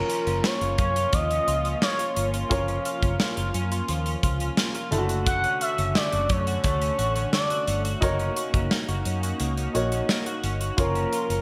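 This romantic, nostalgic slice of 1980s-style pop in F# major opens with a smooth sawtooth lead carrying the melody, gliding between notes with portamento and vibrato through a chorus effect. Beneath it, a polished grand piano with short sustain plays the accompaniment. A detuned analog pad holds slow-attack chords in the background, and a clean, compressed twelve-string electric guitar picks a riff through analog chorus and digital delay. A punchy, up-front studio drum kit of kick, snare and hi-hat enters at 0.1 seconds, followed at 0.3 seconds by a dark, round, foam-muted fingered electric bass. At an unhurried 87 BPM in straight 4/4, the harmony moves from F#maj7 to Dmaj7/F# and D#m7/F# before settling back on F#maj7. Moderate plate reverb and a small room ambience frame the bright digital production of this passage, which is cut from a longer piece.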